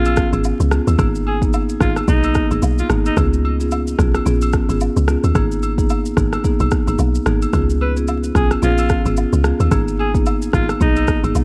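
A dark production with a small-room reverb and a layer of vinyl crackle opens this breezy, romantic afrobeats excerpt, cut from a longer piece, with a lilting swing in its sixteenths. A deep, round log drum bass sits up front with a fast, percussive attack and a decaying, FM-tinged tone. Beside it, an electronic, produced afro-pop kit, also up front, drives the groove with a deep kick, rim click and shaker. A close-miked, dry marimba played with medium mallets fills out the harmony with a warm, full tone as Db7 and Abmadd9 alternate, while quiet agogo bells and woodblock add acoustic colour beneath. A raspy, gritty alto saxophone carries the pop-style solo melody with a clear, vintage edge and a tape echo, playing from 0.0 to 3.2 seconds and returning at 7.8 seconds.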